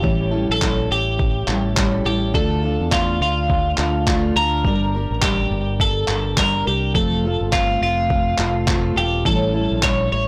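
A swung sixteenth-note groove at 104 BPM drives this sunny, carefree acoustic pop excerpt, with a gritty, sampler-style soul drum kit up front, its thumpy kick and handclaps overdriven until it drops out at 10.0 seconds. A bright, twangy twelve-string electric guitar carries the melody with delay, over a full-bodied picked jumbo acoustic guitar, complete with finger squeak, and a round, dark fretless electric bass moving through A7, Dm, Gm and F. The whole mix has a blown-out, overdriven character and light reverb.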